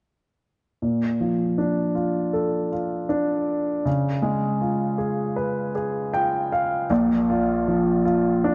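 A clear, intimate grand piano plays alone from 0.8 seconds in this emotional, hopeful pop excerpt, moving at an unhurried pace over Bbmaj7 and Db7 chords, with the clatter of its action audible and its notes ringing with long sustain. Set up front in a dark, warm mix, the piano sits within the lush, lingering reverb of a scoring stage. A short fill at 5.8 seconds leads into a brief new passage at 6.9 seconds that settles on a Bb5 chord before the fragment cuts off.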